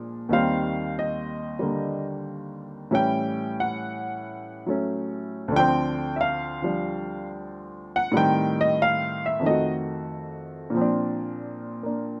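Swung eighth notes at 92 BPM in 4/4, with a 69% swing, give this brief jazz fragment an easy, lilting gait. A lone upright piano carries everything from 0.0 to 12.2 seconds, ranging from D2 up to G5 with a woody, polished tone that sits up front in the mix. The harmony moves through Eb6, A7, Dm7, Am7b5 and F7b9 before shifting into a new passage at 10.8 seconds on a Bbadd9 chord. The mood is sophisticated yet playful. Close, detailed microphones and light reverb keep the instrument present and detailed, and the tuning sits at A4 = 438 Hz. The clip is cut from a longer piece.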